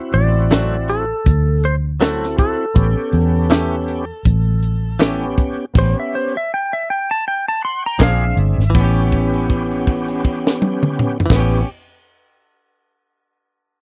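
A dry, close 1970s-style studio sound frames this short cut from a longer soulful, gritty soul blues in A mixolydian at 80 BPM, where a tight funk drum kit with high-tuned snare and tambourine plays alongside a round, foam-muted fingered electric bass up front, a clean, twangy lap steel guitar carries the slide melody until 8.4 seconds, a bright direct-recorded electric guitar adds picked stabs, and an overdriven tonewheel organ with key click, chorus vibrato and slow rotary speaker comps, plays a fill from 7.2 seconds and then sustains a held note over the closing A9 chord.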